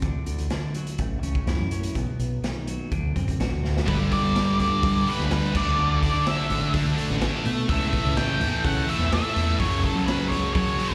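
Restless and bittersweet, this quiet-loud alternative rock excerpt at 126 BPM opens with a bright, twangy twelve-string electric guitar picking arpeggios over a growling, overdriven fingered bass and a raw garage drum kit with dark cymbals and a punchy, saturated kick, all heard as a live gig through the venue's PA with recital hall reverb. After a drum fill at 3.6 seconds, the loud section hits at 3.9 seconds as the twelve-string stops and three distorted rhythm guitars take up the riff: a thick fuzz guitar and a heavy high-gain guitar sitting in the background, and a double-tracked high-gain guitar with slapback echo. Over them, a dark octave-fuzz lead guitar carries the melody, moving through chords from G5 to F#5.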